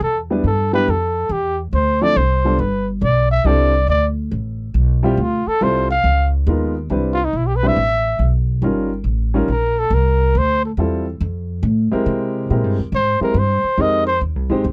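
Small-group swing and bop jazz in C major at 139 BPM, with a relaxed, warm mood and a swung feel in this short excerpt from a longer piece. A mellow trumpet with vibrato and a soft attack carries the melody and moves into a solo at 6.9 seconds, over a woody, thumpy pizzicato upright bass and a natural-sounding baby grand piano that accompanies through chords like Em7, Dm7 and C69 before richer colours such as Db13 and Fm11. The sound is dry and close, like a 1970s studio session, with trumpet, bass and piano all placed up front.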